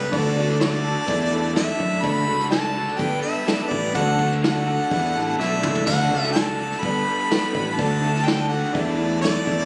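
Captured on a phone in a studio room with light reverb and compression, this short cut from a longer folk rock and heartland rock piece has a jangly, nostalgic feel in a straight 4/4. An up-front harmonica carries the melody with a clear tone, light vibrato, scooped notes and an analog delay, over a bright, overdriven, double-tracked garage guitar riff and a shimmering, octave-doubled twelve-string acoustic with finger squeak and analog chorus sitting in the background. A growly fingered electric bass, a very quiet, mellow grand piano and a brushed drum kit with a punchy kick fill out the sound, the drums adding a fill at 5.4 seconds as the chords cycle through D, Asus4 and Gadd9.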